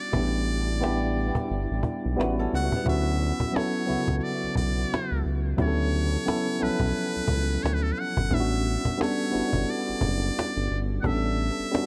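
A muted trumpet with a metal mute carries the melody in this sensual, smooth neo-soul R&B fragment at 88 BPM in D major, its buzzy, brilliant tone close-miked with vibrato and trailing dub echo. A worn, slightly out-of-tune tine electric piano sits up front with its own dub echo over a deep, round analog bass and a woody cajon played with soft hands. A dark, hollow-body archtop guitar adds a brief picked second line from 2.2 to 3.1 seconds, all set in a small, echo-heavy room.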